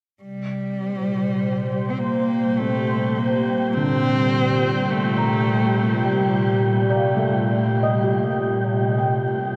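The music moves in a slow, straight 3/4 at 52 BPM, a melancholic yet serene ambient piece in C dorian that opens on a Cm7 chord in this short fragment of a longer work. A warm analog pad holds sustained chords from the start, its detuned sawtooth and triangle tones made warbling and vintage by a lush chorus, while a filter sweep runs across it. Up front, a dark, bowed solo cello sings the melody in a low register with expressive vibrato and portamento, its delay trailing behind it until it falls away at 6.9 s. An airy, breathy wind-like tuned noise texture drifts in at 1.2 s on a high sine tone with its own reverb, and a felt-muted upright piano joins at 2.6 s with soft, intimate arpeggios, also carried by delay. A huge, wet room reverb with a very long tail bathes the whole mix in a hazy, spacious glow.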